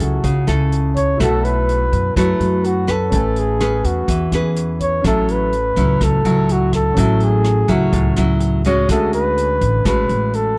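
A mellow flugelhorn carries the melody up front in this melancholic, intimate bossa nova excerpt in F# minor, its light vibrato and jazz-style phrasing touched by tape echo as it moves between F#4 and C#5. A full-bodied, fingerpicked nylon-string guitar sits equally forward, classical in tone with audible finger squeak, while a grand piano with short sustain stays in the background. The pizzicato upright bass on steel strings gives a woody, thumpy low end, and a drum kit built for big-band swing keeps a straight 4/4 at 125 BPM on hi-hat, rim click and a punchy kick, dropping out at 10.4 seconds. The harmony moves through F#m7, B7sus4, Amaj9 and F#m7/A before settling on Dmaj9#11 at 8.9 seconds. The sound is dry and close, in the manner of a 1970s studio, giving the short passage an intimate feel.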